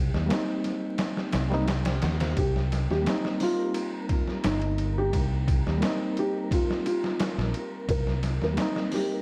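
A reedy electric piano with harmonic tremolo, vintage 12-bit sampler grit and tape echo opens this cinematic, hypnotic trip hop excerpt on a Cm7 chord, joined at once by an up-front fingered electric bass and a breathy, wind-like tuned noise layer with analog chorus sitting in the background. A compressed, pitched-down sampler-style drum kit, re-recorded in a small room, enters at 0.1 seconds with a thumpy kick, medium-tuned snare, hi-hat and ride. From 2.4 seconds a felt-muted upright piano carries the melody, soft and dark with audible action noise and its own tape echo, inside a dreamy mix soaked in plate reverb and vinyl crackle.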